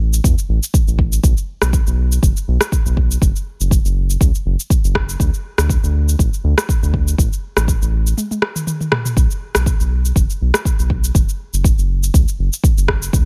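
A lightly swung 4/4 groove at 121 BPM drives this earthy afro house passage in B minor, cut from a longer piece. A deep, tape-warm electronic kick sits up front beside an afro-pop kit of cabasa, rim click and toms, both carrying studio reverb, while a round, dark analog bass holds sustained low notes with sidechain pumping. A short break with a drum fill arrives between 8.2 and 9.2 seconds.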